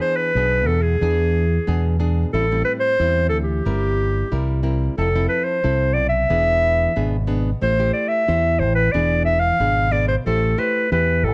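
A smooth-topped clarinet in classical style sings a yearning melody up front over fingerpicked, warm nylon-string guitar from the first moment, joined at 0.3 s by a bright, direct fingered electric bass with an envelope filter, in this lively samba and choro fragment in A minor at 91 BPM, moving through E7, Am7, C7/G and Fmaj7, captured with close, detailed microphones and light reverb and cut from a longer piece.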